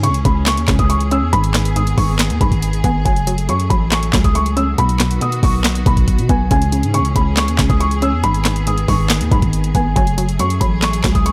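Heard from the start, this dark, melancholic trap excerpt at 139 BPM in a half-time 4/4 feel in C# minor sets a soft, felt-muted upright piano with audible action noise on a high, delayed melody over a hollow, detuned square pluck with chorus, smooth bowed studio strings holding chords, a growling, buzzy 808-style bass and an up-front trap kit of knocking kick, sharp snare, handclaps and bright hi-hats, all in a digital ambience as the chords move from C#m through G#m and F#madd9 to B.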